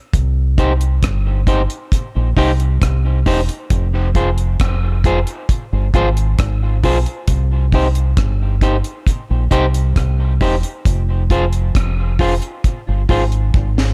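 Dub reggae excerpt in C minor at 67 BPM, deep and heavy, where a round, dark fingered electric bass and an up-front, dry drum kit with a high-tuned snare, tight kick, hi-hat and rim click hold the groove from 0.1 seconds over alternating C minor and F minor chords, while a slightly broken-up, fingered electric guitar with dub echo enters at 0.6 seconds, all in studio reverb until a drum fill at 13.5 seconds closes the cut.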